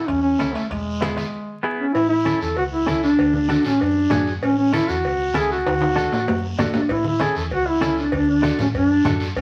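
Festive and joyful, this short cumbia clip moves at a brisk 194 BPM in a straight 4/4, centred on A major and cycling among A, E and D chords. A mellow, up-front duduk carries the melody with soft attacks and scooped, folk-style notes, while a clean, compressed semi-hollow electric guitar fills in the harmony with a fingered, warm tone. Underneath, a dark, round hollow-body bass holds down the low end, and ringing metal-shell timbales and cowbell sit close alongside raspy guiro and bright, low-tuned congas set back in the background. A very quiet, dry bombo appears only at the start and again from 6.9 seconds, just after a drum fill that runs from 5.7 seconds. Moderate studio reverb and a layer of vinyl crackle round out the recording.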